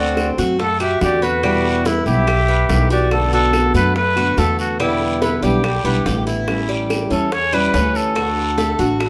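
Tight, high-tuned bongos and woody claves sitting in the background, along with a raspy, saturated guiro, set a straight, danceable Cuban son and guajira groove from 0.2 seconds under a thumpy pizzicato upright bass that stays up front. A breathy, intimate trumpet with vintage vibrato carries the melody, joined until 3.5 seconds by an airy, reedy silver flute on a crisp second line. Meanwhile, a fingerpicked steel-string acoustic guitar and a metallic, double-strung tres weave warm accompaniment and arpeggios inside a moderate studio reverb in this cut from a longer piece.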